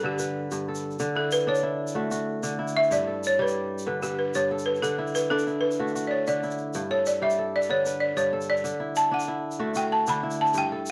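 A woody, buzzing balafon carries the melody throughout this short excerpt of West African string and xylophone music, its dry, airy tone struck with hard rubber mallets and placed up front. The mood is flowing and joyful, moving at 126 BPM in a straight 12/8 metre in G lydian, tuned slightly low to A4 = 438 Hz. Beneath it, a ringing, fingerpicked kora plays crisp arpeggios in a lower register, also close and present. An egg shaker enters at 0.2 s, adding grainy, bright percussion with a vintage, band-limited character, softer than the other two parts. The harmony alternates between G and D chords, and light reverb with studio ambience gives the recording a gentle sense of space.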